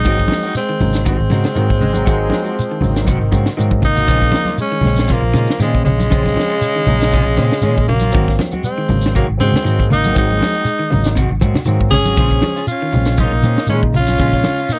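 A dry, close 1970s-style studio sound with light reverb frames this hypnotic, funky afrobeat excerpt in Bb minor at 119 BPM, swinging lightly on the sixteenths over a chord cycle of Ab7 and Bbm7. A raspy, gritty tenor saxophone carries the melody up front, with a breathy, smooth-topped alto saxophone on a second line and a vintage trombone section adding its own brief line between 1.5 and 3.8 seconds. Beneath them a tight funk kit with a high-tuned snare drives the groove and plays a fill at 3.7 seconds, with a dark, round hollow-body bass, grainy shekere and bright, hard-handed congas, while two clean picked electric guitars, one playing chorused arpeggios and the other stabs, sit in the background with a barky, lightly overdriven tine electric piano.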